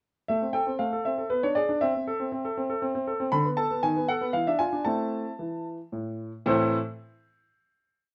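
A clear grand piano opens the piece alone at 0.3 seconds, carrying a single-line melody over a broken-chord bass in a classical-period sonatina style. The mood is restless yet elegant, moving in a straight three-beat metre. The harmony passes from the home minor chord through diminished and seventh chords, reaching a darkened dominant before resolving home at 4.9 seconds. The piano sounds smooth and vintage, with a short sustain, and sits up front in a moderate studio reverb. The whole recording carries the worn, warbling character of old cassette tape, with a warbly drift in pitch. The theme gives way to a final chord at 6.5 seconds, which lingers in the room until the piece ends.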